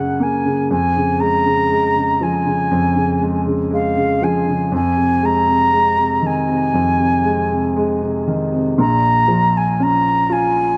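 This pop ballad fragment in Bb minor moves at a slow, straight 60 BPM in 4/4, carrying a longing, emotional mood. An airy concert flute with expressive vibrato and a crisp attack sings the melody high above a smooth, vintage-toned grand piano, both parts playing throughout and sitting up front. Light reverb colors a dark, warm production, and the harmony passes from Gbadd9 through Db/F and Fm7 before settling on Bbm at 8.8 seconds.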